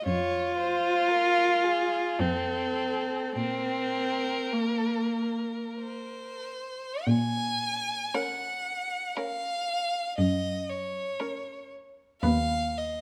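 A viola and a second violin open the passage at 0.0 s with the cello joining almost at once, setting a slow, melancholic string quartet movement in Bb minor and 3/4, pulled gently in rubato at roughly 46-59 BPM. The viola sits up front as a full-bodied, even accompaniment in its middle register, while the cello anchors the low end with a soft attack, vibrato and expressive portamento. At 1.1 s the first violin enters with the melody, a focused, smooth voice high above the ensemble, placed forward in the balance. The second violin, kept quieter, adds a warm, vibrato-rich inner line with expressive slides. The harmony moves through Bb minor and Gb, and the phrase repeats from 7.1 s before this elegiac fragment of a longer piece is cut off, all of it carried by a moderate recital hall reverb.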